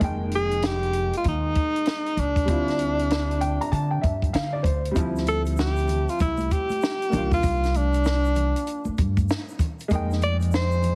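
Mellow and nocturnal, this short jazz-hop excerpt at 97 BPM in D phrygian sets a dark, worn upright piano with audible action noise and a woody, thumpy upright bass under a dry, tight cocktail drum kit, while a vibrato-rich alto saxophone with scooped notes carries the melody up front from 0.4 seconds, the piano slips in a fill at 3.1 seconds, and ringing egg shaker and congas join in the background at 5.0 seconds over minor eleventh chords, all bathed in light studio reverb, heavy radio-style compression and vinyl crackle.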